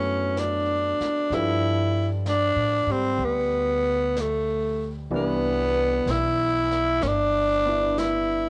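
A growling, raspy tenor saxophone carries the melody up front in this smoky, melancholic jazz ballad excerpt at 63 BPM with a swung feel, over a woody upright piano in the background, a pizzicato steel-string upright bass, and a brush kit, also in the background, that enters at 0.4 s, with the saxophone, piano and drums carrying a cassette-tape tint within a small-room home recording as the chords move from Dmaj9 to G9 to Cmaj9.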